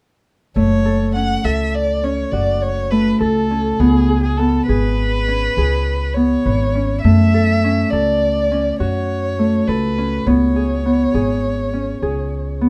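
Moving in a straight 11/8 at 204 eighth-note beats per minute, this short cut from a longer piece of contemporary chamber music sits in F# minor and alternates between F#m and C#5, giving it a pensive, restless mood. A bowed solo violin with a shadowy tone carries the melody with expressive vibrato and portamento, while a ringing, fingerpicked Celtic harp spins arpeggios and a woody, thumpy pizzicato upright bass on gut strings anchors the low end, all three playing from 0.6 seconds to the end and sitting up front. Light reverb and a dusky, warm production wrap the trio.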